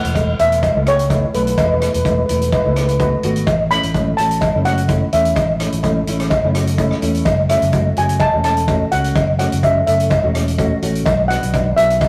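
Calypso in A major at 127 BPM, sunny and festive, with a light swing on the sixteenths and a 442 Hz tuning that sits a touch bright. A shimmering lead steel pan, struck with soft rubber sticks, carries the melody between B4 and B5 and sits at the front of the mix. Beneath it, a small, dark nylon-string guitar is fingerpicked as accompaniment, while a growly, amped fingered electric bass anchors the low end from E1 to E2. A compact street-band drum kit with a boomy kick, hi-hat, rim click and a rolled-off top keeps time, joined at 0.1 seconds by a distant cowbell that seems to ring in a larger space. The harmony moves from Esus4 to A, then F#m7 and Bm, all within this short excerpt cut from a longer piece, heard in a moderate stone-room reverb with the rough, saturated character of a rehearsal-room recording.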